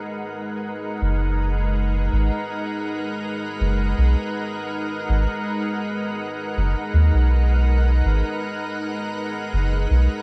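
Light reverb and a bed of vinyl crackle give this short fragment of a longer ambient dub piece a spacious, hazy atmosphere. It moves at 81 BPM in 4/4 with a gentle 54% swing on the sixteenths, resting on a single G#m7 chord in G# minor. A soft, organ-like pad sustains the chord from the very start, its pure, bright, calm tone built from triangle and sine waves with a sub octave beneath, slowly fading in and evolving under an ensemble chorus and its own reverb. From 1.0 seconds a soft dub sub bass joins up front, deep and round, sustaining low notes with a fast attack.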